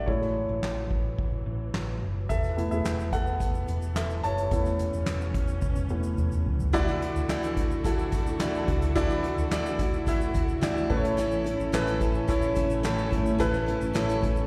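Heard as a live gig through the venue's PA with light recital-hall reverb, this uplifting, piano-driven pop excerpt moves at 108 BPM in a straight 4/4, with an intimate, up-front concert grand carrying a solo passage over audible action noise and slapback echo, lush bowed symphonic strings sitting in the background, and a round, punchy hollow-body electric bass underneath. A soft-mallet drum kit with a boomy kick, fat snare, dark cymbals, handclaps and toms plays throughout, a grainy tube shaker joins quietly at 2.3 seconds, and a drum fill leads into the second section. At 6.7 seconds a picked steel-string acoustic guitar enters with a riff and its own slapback echo, while the piano adds a brief fill as the chords move from Dadd9 to A.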